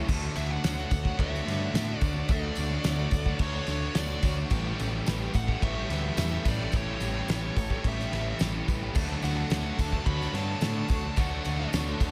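This blissful, dreamy shoegaze and dream pop excerpt opens on a wall of sound: a very quiet, mellow, warbling organ-string ensemble holding sustained chords, a twangy, lo-fi guitar through a small old amp picking arpeggios with lush chorus and digital delay, and several overdriven guitar riffs sitting in the background. One is biting and dark with ensemble chorus, another is warmer and carries reverse reverb, and a bright, double-tracked crunchy guitar appears for an instant before returning at 8.9 seconds. At 0.1 seconds an up-front, loose indie drum kit kicks in at a straight 108 BPM in 4/4, with a punchy kick, fat snare, dark crash and ride cymbals and a pumping room sound. A growling, overdriven picked bass enters with it, alongside a jingly, saturated tambourine tucked far back. From 0.4 seconds a nasal lead guitar with a parked wah, overdrive and digital delay sings the melody high over the haze. 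The harmony in D major moves from Dmaj7 to A7 and back to Dmaj7, all bathed in studio ambience.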